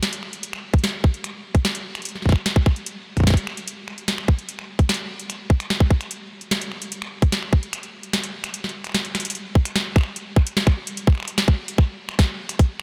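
A booming analog drum machine opens this eerie, cerebral IDM excerpt at 148 BPM in a straight 4/4, its finger snaps, crisp snare and metallic hi-hats sounding up front and tape-warm through an analog delay and a large-room ambience; a tight, produced electronic kick joins at 0.7 seconds, drops out at 7.7 seconds, and returns after a drum fill at 9.1 seconds, all under a light reverb.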